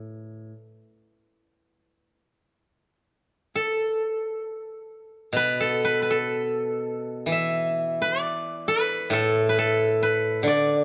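Close, detailed microphones and light reverb put a single steel-string zither up front, so every ringing note comes through clearly. This short cut from a longer piece of Chinese traditional music is a serene, flowing solo for plucked strings. It moves in a loose 4/4 at roughly 60-71 BPM, with a rubato feel that lets the pulse breathe. The acoustic zither, played with fingerpicks, has a bright, silvery tone and spans from A2 up to E5, tuned slightly high to A4 = 441 Hz. At 7.3 seconds the music turns to a new section, which carries on until the fragment ends at 10.8 seconds.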